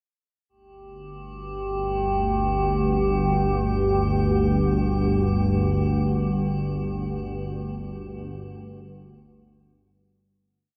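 This short dark ambient drone piece drifts in free time with a desolate, unsettling mood, centered on a held G5 sonority. At 1.4 seconds a metallic, inharmonic FM drone emerges on a single high G4, eerie and up front, treated with chorus, its own reverb and a shimmer reverb. A moment later, at 1.5 seconds, an organ-like drone settles in underneath between G1 and D2, its detuned unison sine tones warbling with a vintage ensemble chorus and their own reverb, calm and sustained. Both parts bloom slowly and hold with long releases inside a huge, wet ambient space whose reverb tail stretches to 8.3 seconds, giving the production a dark, warm character. From 5.5 seconds the drones fade out together, the high tone dissolving at 10.6 seconds and the organ-like bed at 10.7.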